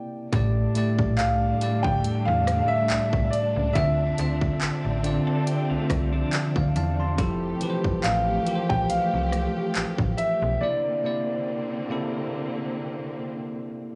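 Contemporary R&B with a sensual, longing mood and a light swing, built on a bright, bell-like tine electric piano up front and a bowed string section whose sustained chords carry vibrato and portamento under a sidechain pump. A snappy, metallic FM bass and a tape-warm trap kit with a hard-clipped kick, bright hats, handclaps and rim clicks drive the groove, while a dark, mellow concert grand carries the high melody through analog delay, and a compressed, picked electric guitar adds background arpeggios with tremolo and delay between 5.3 and 7.1 seconds. The bass and drums drop out by 10.6 seconds for a closing break over a C9 chord, and the mix stays dry and gritty throughout.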